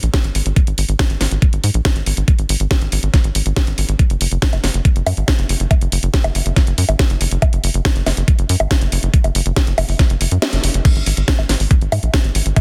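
A tight, driving sequencer bass opens this psychedelic trance excerpt together with a layered electronic kit of bongos, crash cymbal, hi-hat and a cracking snare, and an up-front, knocking electronic kick joins a moment later. The mood is alien and intense, carried by a straight 4/4 feel. The bass blends sawtooth and square-wave tones with a fast-attack filter pluck that decays into a mellow, punchy pulse, sitting forward in the mix beside the kick. At 10.4 seconds the kick falls away for a brief gap, marked by a band accent, before the drop lands at 10.8 seconds and carries through to the end. A digital ambience surrounds the parts, and the dense, heavily limited master keeps the whole passage loud and compact.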